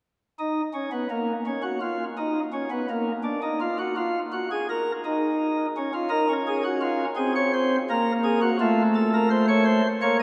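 This is a baroque-style three-part fugue in the classical tradition, played on a solo pipe organ at 84 BPM in a straight 4/4, with the mood both contemplative and driving. The organ enters at 0.4 s using light, bright flute stops with a baroque voicing, and the sound carries a chiff that gives the line a sparkling edge. Its range spans A3 to Db5, and the instrument is tuned to A4 = 438 Hz. The opening is unaccompanied by chords, and the harmony then moves through Bbm/Db at 5.8 s, Ab/C and F/A. A cathedral reverb with a long, 6.0-second decay surrounds the organ, placing the listener further back in the room even as the flutes sit up front in the blend. The passage is cut from a longer piece and ends at 10.2 s.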